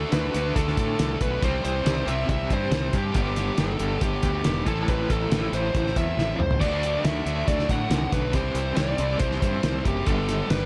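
A dark, picked fuzz lead guitar with slapback echo carries the melody from the first moment of this sunny, driving classic rock excerpt at 139 BPM in G major, over a bright overdriven electric guitar riff, a hollow-body semi-hollow guitar riff with tremolo sitting in the background, and a growly, up-front fuzz fingered bass, while a lo-fi, small-room, cloth-damped drum kit with a fat snare, tight kick and dark cymbals pushes through a D–C–G–Am progression, marked by a drum fill at 6.2 seconds.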